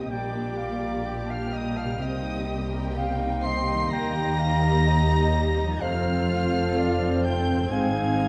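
A full orchestra opens together on a Gm/Bb chord in this bittersweet, sorrowful film-score fragment in G minor, moving at a slow, rubato 63 BPM in 4/4. A lush, bowed violin section carries the high melody with smooth vibrato, while a dark, softly attacked solo clarinet, a pure, distant concert flute and a second, more focused violin section play supporting lines beneath it. Rich violas provide accompaniment, a tight French horn section holds sustained chords in the background, and a ringing, fingerpicked harp adds very quiet arpeggios. Underneath, an expressive double bass section and a cello section form the bass, with the basses standing out as the strongest voice in the blend. The harmony moves through Cm7, Eb and F before arriving on Ab at 7.7 seconds, and the whole passage sits in a wet concert-hall reverb with a dark, warm production across its 8.3 seconds.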